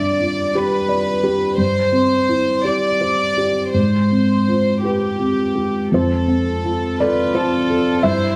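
A felt-muted upright piano, mellow and intimate with a thick-felt, vintage tone, sits up front in this tender, hopeful neoclassical passage, played with rubato at 56 BPM in 6/8 and tuned to A4 = 439 Hz. Alongside it, a close symphonic violin section carries the melody, bowed sul tasto with a soft attack and a pure, floating sound, while a single viola joins as quiet accompaniment at 7.0 s. Moderate large-studio reverb surrounds the dark production as the harmony moves from G7 through C/G and Fmadd9/Ab to F.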